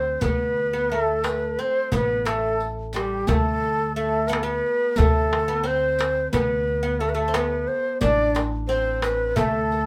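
In a small room with moderate ambience, this short cut from a longer Turkish makam ensemble piece in D makam huseyni moves at 177 BPM in eighths through a straight 9/8, its longing, soulful melody carried by an up-front, breathy, reedy ney with vibrato and tongued notes, over a fretless, plectrum-plucked oud with double strings on a woody second line, a pizzicato upright bass with steel strings placed up front, a crisp, compressed and saturated metal-shell darbuka struck with hard hands, and a riq whose bright jingles sit in the background.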